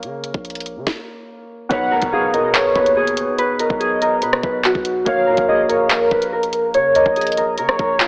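Drill hip hop at 143 BPM in a half-time feel, tense and cold, where a felt-muted upright piano with audible action noise and a punchy, heavy 808-style bass sit under a knocking, sharp electronic drum kit of handclaps, hi-hat, rim click and snare, before an up-front thumb-plucked Celtic harp melody and a velvety, detuned synth lead with chorus and delay enter at 1.7 s alongside a very quiet impact, all bathed in lush hall reverb and an AM radio tone over Bbm, Badd9 and back to Bbm in this short excerpt.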